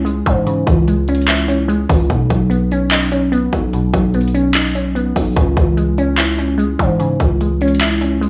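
A dry, up-front mix opens this short, dark and melancholic trap cut in C# minor, moving at 147 BPM with a half-time feel and shifting from C#m to Badd9 and back. A glassy, crystalline wavetable pluck with chorus, a noise layer and a filter sweep carries the accompaniment over a growling, buzzy 808-style bass that strikes fast and decays. Entering at 0.1 seconds, an electronic trap kit of overdriven handclaps, metallic hi-hats and a hard-clipped kick drum completes the arrangement.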